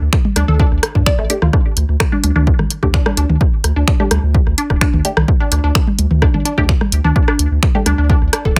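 A squelchy, resonant blip pluck, bright with phaser, delay and sidechain pumping, carries this quirky, sparse minimal techno excerpt at 128 BPM in a straight 4/4 over a D5 chord. A round, deep analog bass sits up front with its own sidechain pumping, beneath an upfront electronic kick, a tape-warm analog drum machine supplying finger snaps and hi-hat, and a layered garage kit adding rim clicks and toms through delay. From 1.3 to 7.8 seconds a muted, wave-folded dub chord stab drifts in with phaser and delay, all in a dry, close-sounding mix.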